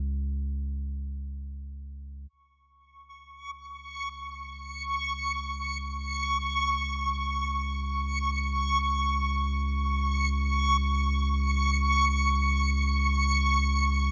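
A reversed, granular texture enters at 3.5 s high in the register, sitting up front with a bright, dreamy, detuned character. Its triangle tone has a soft attack and long release, and its own built-in reverb adds to its sustained, swelling haze. Beneath it, a deep, round sine sub bass holds a low Db from the very start, its fast attack giving way to a steady sustain. That bass fades in from 2.3 s onward, shaping a luminous, serene piece of ambient music in free time. The whole recording is wrapped in a moderate shimmer reverb with an 8.2-second decay, and this portion is cut from a longer piece.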